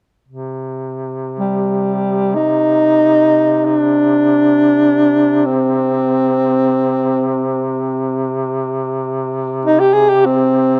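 Mournful and longing, this short excerpt from a longer Caucasian folk lament unfolds in free time in C minor, tuned slightly high at A4 = 441 Hz. A clear duduk opens at 0.3 s, holding a low drone on C3 with vibrato and scooped notes that give it a vintage, folk-style character. At 1.4 s a mellow alto saxophone enters up front with the melody, moving between G3 and Ab4 with light vibrato, a soft attack and a smooth top, played in a classical style. The saxophone sits well above the quieter duduk in the balance, and both continue together to the end at 10.8 s. Light reverb and a small room ambience surround the pair, and the rough home demo mix keeps the sound unpolished.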